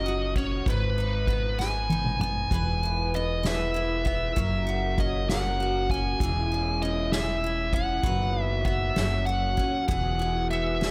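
A lilting 6/8 sway at 65 beats per minute in dotted quarters carries this tender, romantic pop ballad, an excerpt cut from a longer piece. Up front, a bluesy overdriven electric lead guitar sings the melody with distortion and tape echo, while a double-tracked, picked steel-string dreadnought with old strings lays down full-bodied, woody accompaniment. A pizzicato upright bass on gut strings sits close and thumpy, and a distant, roomy drum kit played with soft mallets brings punchy kick, snare, toms and ride cymbal, with a drum fill from 1.6 to 2.5 seconds. At 2.5 seconds a mellow French horn section enters with sustained chords in a classical style, touched with light vibrato. The harmony moves from F# through G#m, E and C#m/E to B/F#, settling on Eadd9, all wrapped in a small room ambience.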